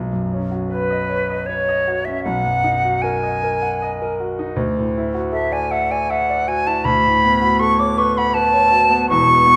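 Dreamy and luminous, this short excerpt from a longer impressionist classical piece is a duo for flute and grand piano in 3/4 at 79 BPM, played with a rubato feel. The grand piano opens at 0.0 seconds with a clear, smooth, slightly vintage tone and long sustain, spanning deep bass up to its upper middle register as it accompanies. The silver concert flute enters at 0.7 seconds to carry the melody high above, its metallic, airy sound shaped with vibrato, tongued notes and expressive phrasing, and it sits a little louder than the piano. The harmony drifts through Badd9, G#m9/B, Dadd9 and Bm9/D, lending the passage a hazy, floating color. Both instruments sound close and up front, framed by a lush recital hall reverb with a 1.3-second tail.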